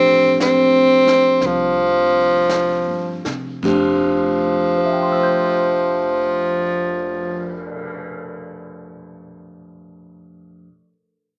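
A slow swung 4/4 pulse of 52 to 62 BPM slows down over the first 3.6 seconds of this late-night, romantic jazz ballad in F major, cut from a longer piece and opening on an F69 chord. A clear, present tenor saxophone carries the melody up front as a solo, while a clean tine electric piano heard through a combo amp supplies the accompaniment. A woody, growly pizzicato upright bass sits in the background, and a dark, smooth vintage brush drum kit enters at 0.4 seconds with brushed snare, hi-hat, ride, cymbal swell and a tight kick. The saxophone and bass stop at 7.7 seconds and the drums at 7.9 seconds, leaving the electric piano alone until 10.7 seconds. A moderate large studio reverb and a small speaker sound shape the recording.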